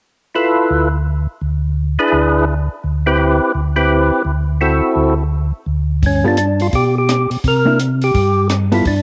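A lightly reverberant small room holds this bluesy, greasy soul jazz organ trio excerpt, swinging in 4/4 at 169 BPM over Dm69, then G and C7(no3). A fat, lightly overdriven percussive tonewheel organ carries the melody up front through a slow rotary speaker and slapback echo, while a round, mellow second organ with chorus vibrato plays the bass line from 0.7 seconds. At 6.0 seconds a compact cocktail drum kit with a punchy kick and rolled-off top enters on hi-hat, kick and rim click, joined at 6.2 seconds by the dark, compressed accompaniment of a clean hollow-body jazz guitar.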